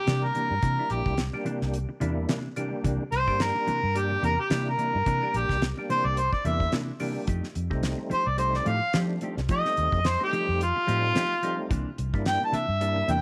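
Laid-back and rollicking, this short cut from a longer soul blues piece rides a straight-eighth groove with a gentle swing on the sixteenths. A mellow harmonica carries the melody as a jazz-style solo throughout, sitting up front with a soft attack, light vibrato and a touch of overdrive, its tone carrying a roomy, distant quality. Beneath it, a full tonewheel organ adds lightly overdriven accompaniment with third-harmonic percussion, chorus vibrato and a stopped rotary speaker. A dark, clean and compressed electric guitar plays fingered stabs, while a vintage foam-muted bass gives a round, punchy low end and a 70s drum kit keeps a dry, polished beat with a fat snare, tight kick and hi-hat. The harmony moves from C9 to F9 at 7.3 seconds and returns to C9 at 11.7 seconds, all set in light reverb and a small-room ambience.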